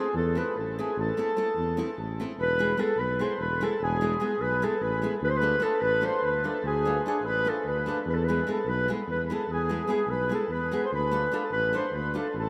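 A dark, distant clarinet leads this bittersweet, virtuosic Balkan folk excerpt in 7/8, carried over a reedy accordion second line, bright fingerpicked nylon-string guitar and a close-miked, up-front tuba bass, all bathed in a vast, echoing reverb as the chords move from Am to E at 2.4 seconds.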